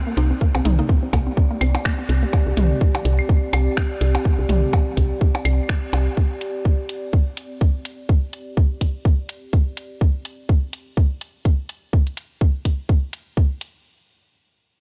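A tight, up-front electronic kick drives this clinical, cool minimal techno excerpt at 125 BPM in 4/4 with a light 16th-note swing, alongside a round, woody FM bass on C2 that pumps against it until about 6.1 s. A squelchy, resonant blip pluck riff with chorus and analog delay opens under a filter sweep through 2.3 s, while a brief mallet-like FM pluck sits in the background and a warbling, nostalgic lo-fi pad with slow attack and long release breathes with sidechain pumping until 10.0 s. A garage kit of finger snaps and bright hi-hats runs alongside electronic percussion blips, toms and claves in a small room ambience, all under a light reverb.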